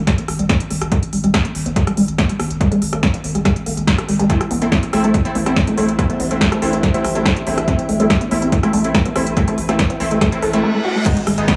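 Echo-heavy and steeped in moderate spring reverb, this driving, hypnotic peak-time techno excerpt rides a punchy, up-front electronic kick and a techno kit of punchy snare, smooth hi-hats, ride, crash and rim clicks trailed by tape echo, under a deep, thick saturated sub bass and a squelchy, juicy blip-pluck riff that phases and pumps through a filter sweep. At 4.3 seconds an aggressive, bright detuned rave stab arrives with chorus and delay, and a blurred, cloudy granular pad drifts in behind it. A reverse cymbal rises at 10.4 seconds before a faint, warbling vintage analog drone surfaces at the very end.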